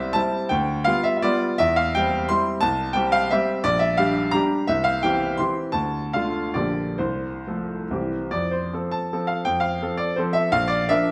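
A bright, brilliant baby grand piano sits up front as the sole instrument in this proud, graceful romantic classical dance in 3/4, its dotted rhythms flowing with rubato at a tempo between 127 and 185 BPM. The music opens in C major, shifts toward F major from 3.6 s, and moves into a new section at 8.3 s, with the piano ranging from Bb1 up to C6. A wet recital-hall reverb with a 1.5-second decay surrounds the instrument in this short fragment cut from a longer piece.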